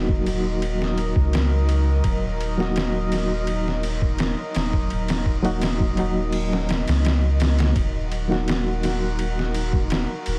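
Trip hop in a dark, hypnotic mood, cut from a longer piece and steeped in echo and vinyl crackle, with a shift into a new section at 7.8 seconds. A reedy electric piano with fast tremolo, tape echo and 12-bit sampler grit plays over a detuned, warbling pad that drifts with chorus and its own reverb, giving a nostalgic, lo-fi haze. Underneath, a round, deep dub sub bass sits up front, and a muffled, pitched-down sampler drum kit enters at 0.1 seconds with thumpy kick, snare and ride, overdriven and compressed in a small room.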